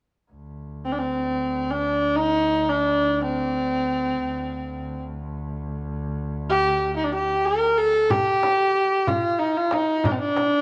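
Unfolding in free time, this excerpt from a longer Persian modal piece sits in dastgah shur on D and carries a hypnotic, soulful mood. A bowed double bass opens at 0.3 seconds, holding a clear, distant drone on D2 with light vibrato. Up front, a single bowed kamancheh carries the melody between C4 and Bb4, its rich, earthy tone shaded with light vibrato and portamento. At 8.1 seconds a second passage begins as a small, bright frame drum, played close and dry with soft hands, enters together with a tight, vintage-sounding tombak with a band-limited warmth, both kept in the background. The bass drone stops at 8.2 seconds, leaving the kamancheh over the two drums, while a moderate plate reverb lends the whole a spacious, lingering air.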